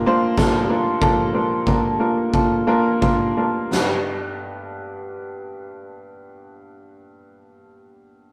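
Hopeful and uplifting, this short piano-driven pop fragment in 4/4 at 83-96 BPM, tuned to A4 = 439 Hz, sets a clear, woody, slightly detuned upright piano up front as accompaniment throughout, joined from 0.4 to 3.9 s by a huge, natural-sounding arena drum kit with a punchy kick, fat snare and china cymbal, while the tempo slows over the opening Bb passage and a piano fill at 2.7 s leads into a move to G at 3.7 s, all carried by a rough rehearsal-room sound with tube saturation and a moderate stone-room reverb.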